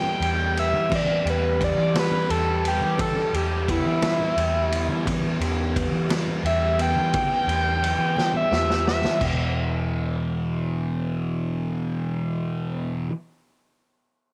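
A gritty, screaming synth lead solos from the start over a double-tracked fuzz guitar riff with phaser, a round, foam-muted bass and damped, low-tuned congas in the background, in this dark, hypnotic psychedelic rock excerpt in a straight 6/8. A vintage drum kit with a punchy kick and rolled-off top joins a moment later. The distorted, sawtooth lead carries its vibrato-laden melody through tape echo until 9.2 seconds, riding over a drum fill from 8.2 seconds, after which the guitar and bass hold an E5 chord as the drums and congas drop away in a small, lightly reverberant room.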